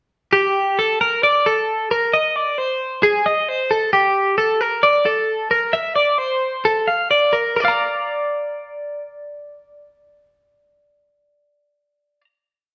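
Intricate and bright, this short rock piece at 132 BPM in Bb major features a solo twelve-string electric guitar, clean, twangy and compressed, sitting up front as it picks an ostinato through Bb6, Ab, C7 and Bbmaj7 before settling on a final Bb chord at 7.6 seconds, all ringing in a moderate stone-room reverb with a live, in-the-room feel.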